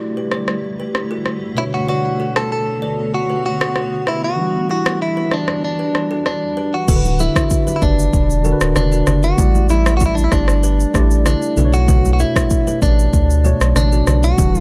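Breezy and sunny, this afrobeats excerpt opens with a clean tine electric piano and a blurred, evolving granular cloud pad washed in its own reverb, while a woody, thumb-plucked kalimba riff sits airy in the background and an up-front deep house drum kit of deep kick, rim click, shaker and crash cymbal sets the groove. From 1.6 seconds a bright, compressed electric guitar, recorded direct and picked, carries the melody through digital delay. At 6.9 seconds the pad stops as a thick, saturated sub bass and very quiet, ringing congas join, all in a dry, close-sounding mix.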